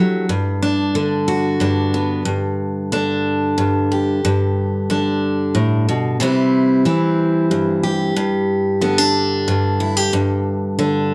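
Heartfelt and down-home, this short country passage, cut from a longer piece, moves at 92 BPM in an unhurried 3/4 with a straight feel. A single picked steel-string acoustic guitar carries everything, playing solo across the full 11.1 seconds and ranging from G2 up to G4. Its dreadnought tone is bright and full-bodied, sitting up front in the mix, and a touch of finger squeak adds an intimate, human detail. The harmony rests on G, shifts to a G5 at 2.3 seconds as a new section begins, moves to C at 6.2 seconds and returns to G5. A moderate large-studio reverb gives the guitar a natural sense of space around its close, present sound.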